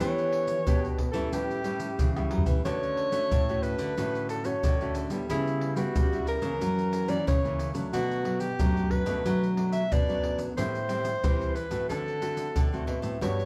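A straight 4/4 groove at 91 BPM drives this lively, joyful blend of samba and choro in D major, carried by maracas, pandeiro, tamborim and a deep surdo played with soft hands, sitting up front in a live, acoustic room. A breathy soprano saxophone takes the melody between E4 and E5 in a jazz style, its dark, whispered subtone, light vibrato and soft attack giving an intimate solo voice with a smooth top. Beneath it, a fingerpicked nylon-string guitar supplies classical accompaniment, moving through chords such as Em7, A7, Dmaj7, F#7 and Bm7. A second nylon-string guitar handles the bass line, its fingerpicking bringing an audible finger squeak. A percussion fill from 2.2 to 2.6 seconds marks the return of the opening passage, and the whole excerpt, cut from a longer piece, sits slightly back in a moderate large-studio reverb.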